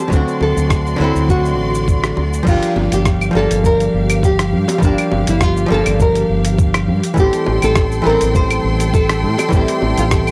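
A gently swung groove sets the pace. A thumpy, gritty electronic kick sits under a compressed, dusty soul sampler-style kit of claves, crash cymbal, hi-hat, rim click and shaker, while tight, high-tuned bongos tick along in the background. This relaxed, smooth sunset chillout excerpt, cut from a longer piece, rests on an up-front fretless electric bass with a tube-saturated, amped tone. A full-bodied nylon-string guitar carries the fingerpicked melody through an analog delay, beside a dark, clean hollow-body jazz guitar playing picked, compressed accompaniment. A lush, close bowed string section holds sustained chords with rich vibrato as the harmony moves from D7 to Gm7 at 2.5 seconds and on to Am7 at 7.2 seconds. The recording is dry, with little reverb and a gritty hardware character.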